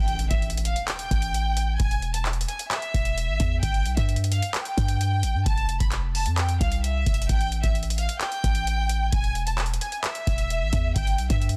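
Dark, eerie trap hip hop at 131 BPM in a half-time feel, cut from a longer piece, where a lush, smooth studio violin section carries the melody with vibrato over a deep, boomy, sine-toned 808 bass and a dry, booming analog drum machine with a deep kick, metallic hi-hats and handclaps, both up front, while an electronic impact sits in the background for the first 1.8 seconds, the whole set in digital ambience with a dense, heavily limited modern master and moving through chords such as E, F5 and G.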